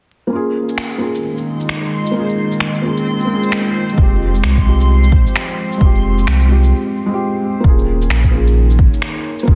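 A boxy, felt-muted upright piano with delay opens this melancholic, rainy future garage fragment at 131 BPM, soon joined by a swung 16th-note groove of electronic shaker and finger snaps, the snaps lightly soft-clipped, and a warbling, nostalgic tape-like pad with chorus, as piano and pad move from Eb7sus4 to Fmadd9 while a reversed, dreamy texture swells above. A deep kick and a round sub bass then arrive at 4.0 seconds, the piano, pad and sub bass all pumping against the kick, before a short break at 6.7 seconds returns to Eb7sus4 under vinyl crackle and a dense, heavily limited master.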